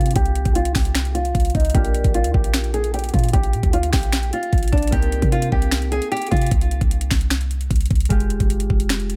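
A dry mix opens this brief slice of a longer trap piece in C minor, moving at 151 BPM with a half-time feel and a melancholic, dark mood. Up front, the electronic trap kit hits with a knocking kick, sharp snare, metallic hi-hats and finger snaps, while a clean, sine-like 808-style bass booms deep underneath with a fast attack and decaying tail. A small, fingerpicked nylon-string guitar carries the melody through a low-pass filter and delay, playing until 6.5 seconds, and a mellow, thumb-plucked concert harp rings softly beneath it as accompaniment, also filtered. A filter sweep runs from the start to 4.9 seconds. The harmony moves from Cm7 to Bb, returns to Cm7 at 4.9 seconds, and closes on Fmadd9.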